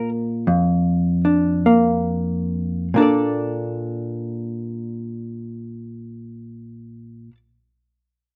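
A dark, clean, fingered hollow-body electric jazz guitar plays alone and up front with a compressed tone in this swinging, sophisticated solo jazz fragment, slowing down over the first 2.9 seconds before carrying on until it stops at 7.4 seconds, set in light reverb.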